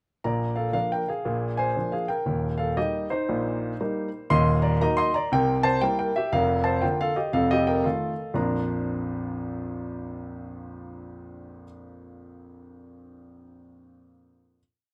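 A moderate echo chamber reverb gives this short stride piano piece a roomy bloom, while the grand piano itself sits up front with a warm tone. It is a complete, swinging, exuberant jazz miniature in 4/4 with a swing feel, played by solo piano from 0.2 seconds. The tune moves in sixths over a stride bass that reaches down into the deep low register, while the melody sits higher on the keyboard. The harmony runs through a lively progression, including a turn to a minor chord and a dominant push, before settling on a held final chord at 8.3 seconds. That last chord rings out in the echo chamber until the piece closes.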